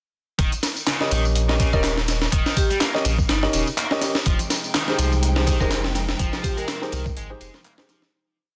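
A gritty, pitched-up sampled breakbeat sits up front, its thumpy kick and high-tuned snare looped with edits and compressed with a warm tape tone. This energetic, playful breakbeat track runs as one short drop from 0.4 seconds, with swung sixteenths and a layered electronic house kit of tambourine, ride and handclaps set above the break in its own small-room ambience. A thick, deep sub bass carries a sustained, dub-style line with a fast attack, matching the drums in prominence. An overdriven, double-tracked electric guitar repeats a bright 32-step picked riff coloured by vintage sampler grit and digital delay, while a dark, mellow grand piano adds short syncopated chord stabs moved in parallel. Further back, a hard-mallet vibraphone with its motor off plays short, metallic answering phrases in a boxy, old-record sound. At 4.3 seconds a clear, focused string section enters with bowed, vibrato-rich sustained chords that pump under sidechain compression, as the whole dense, heavily limited mix fades out from 5.6 seconds.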